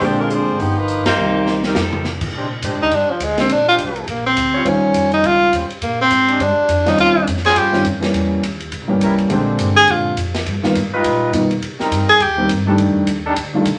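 A clear, present tenor saxophone with light vibrato and subtone takes a solo from 2.8 seconds in this brassy, energetic big band swing excerpt at 207 BPM in Bb mixolydian, following a bright saxophone section melody that ends at 2.1 seconds, with a drum fill after the band accent, while warm grand piano, woody pizzicato upright bass, a punchy, airy drum kit and smooth-topped trombone section chords entering at 2.4 seconds support it through Bb13, Eb13, Edim7 and G7alt changes in a wet studio reverb.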